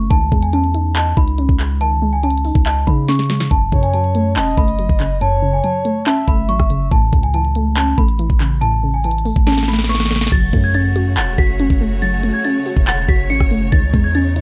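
Up-front trap drums with a knocking kick, sharp snare and crisp hats drive this hard-hitting, melancholic half-time hip hop excerpt, where a delicate bell-like celesta melody with slapback echo rides over a warbly, dusty lo-fi pluck and a deep, mellow 808 bass, a breathy flute-like synth lead drifts in from 3.7 to 6.9 seconds, and amid a very quiet reverse cymbal and impact, lush bowed symphonic strings enter at 10.3 seconds.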